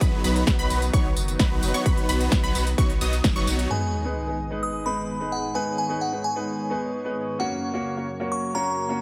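Euphoric and powerful, this festival progressive house excerpt in G# minor drives at 130 BPM in straight 4/4, opening mid-drop on a B chord with much of the mix pumping hard. A huge, detuned supersaw riff runs through a low-pass filter and digital delay, while a punchy, wave-folded unison pluck sparkles with high arpeggios, a deep, saturated sub bass anchors the low end, and a lush, airy pad sustains chords beneath it all. An overdriven, up-front electronic kick pairs with a big-room kit of punchy snare, crisp hats and tambourine, with a band accent landing at 3.2 seconds before the kick drops out. At 3.7 seconds the harmony moves to G#m and the drop gives way to a sub drop impact, as a glassy, crystalline FM bell carries the melody through chorus and delay over an intimate grand piano whose action noise can be heard. A filter sweep moves across the pad through this stretch, which shifts to F# near the end, all set in light digital ambience.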